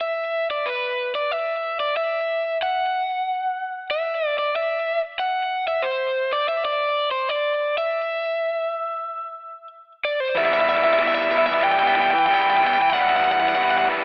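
A straight 4/4 pulse at 93 BPM drives this cinematic, cathartic rock excerpt in E minor, tuned to A4 = 441 Hz, where a picked, overdriven electric guitar carries the melody through tape echo from the start until 13.9 seconds, joined at 10.3 seconds by a double-tracked, distorted guitar riff as the harmony lands on E minor at 10.4 seconds, both bright guitars sitting up front inside a telephone-like sound and a moderate scoring-stage reverb.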